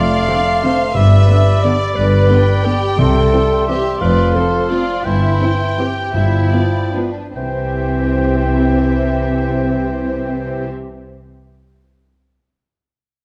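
This festive, elegant classical excerpt in 3/4 and C major opens with full orchestra, as violins carry a smooth, even melody over a lush second violin line, bowed cellos and double basses, and a distant, airy flute, clarinet, oboe and bassoon, with a dark viola section and mellow French horn chords joining at 0.3 seconds. The rubato tempo ranges from 133 to 193 BPM and slows between 4.5 and 7.4 seconds as the harmony moves through G7 to a cadence on C. Very quiet timpani with soft mallets and calf heads sound round beneath it all in a moderate scoring-stage reverb with a dark, warm production.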